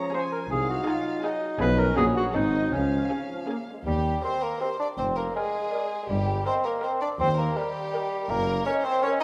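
A bell-like, delicate celesta carries the melody alongside a dark, woody chamber violin section in this mischievous, whimsical film cue at 162 BPM in 3/4. Around it, a second violin section and a distant, roomy clarinet weave second lines, a very quiet viola section supplies accompaniment, and mellow, punchy French horns hold chords in the background. Tuba, double basses and a cello section with soft attack and portamento anchor the bass from 0.5 s, and as the key lifts from Db major to Eb major at 3.9 s, after the clarinet has dropped out, an up-front, vintage-toned bassoon enters with accompaniment, all within a moderate scoring-stage reverb in this short cut from a longer piece.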